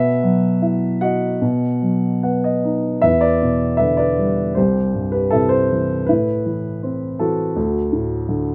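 Close, detailed microphones and a light reverb place a dark, boxy baby grand piano up front, its long sustain carrying through this melancholic classical fragment cut from a longer piece. Playing alone in 4/4 at a rubato 70-84 BPM, the solo piano moves lyrically across a range spanning C2 to F#5, adding a brief fill between 1.8 and 3.0 seconds. The harmony passes from Bsus4 and B through Em7, C and Amadd9 before arriving on D at 7.6 seconds.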